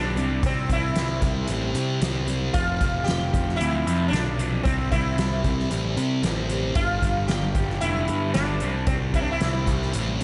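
A straight 4/4 pulse drives this dark, trippy slice of psychedelic rock, cut from a longer piece, with a soft-mallet drum kit entering at 0.2 s alongside very quiet, close and dry congas, the kit's fat snare and boomy kick sounding in a big room. Up front, a thick, double-tracked fuzz guitar riff soaked in phaser and dub echo rides over an overdriven, direct-and-amped fuzz bass, both moving through C, Fsus2, C, G5 and back to C. Above them a bright, buzzing sitar with shimmering sympathetic strings carries the melody through its own dub echo, all set in a light, small-room, echo-heavy mix.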